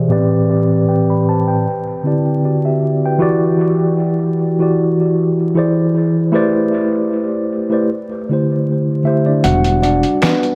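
A mellow tine electric piano, up front and colored by cassette tape, a low-pass filter sweep and tape echo, carries this reflective, hazy lo-fi hip hop excerpt through jazzy minor chords like Am11 and Em9 before taking a solo at 9.4 seconds, where a gritty, compressed sampler-style drum kit with finger snaps, hi-hat and a fat snare joins and a woody pizzicato upright bass sounds briefly until 10.0 seconds, all set in an echo-heavy mix with light reverb and vinyl crackle.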